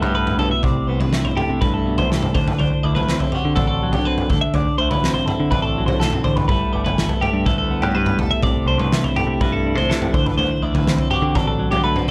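The recording has a dark, warm production with a light reverb, and the drum kit sits up front in a pumping studio room. This piece of math rock and midwest emo feels intricate and wistful, moving in a straight 4/4 through a cycle of G6/9, C6/9 and D9 chords that begins again at 6.5 seconds. A clean, bright, compressed twelve-string electric guitar plays the picked accompaniment in its lower and middle register, with a springy reverb adding a twangy shimmer. A second twelve-string electric guitar, warm and clean with its own twang, picks arpeggios higher up. A bright, growling picked electric bass with overdrive holds down the low end, while the loose acoustic indie kit adds a fat snare, a punchy kick and toms. All four parts play throughout this 12.1-second cut from a longer piece.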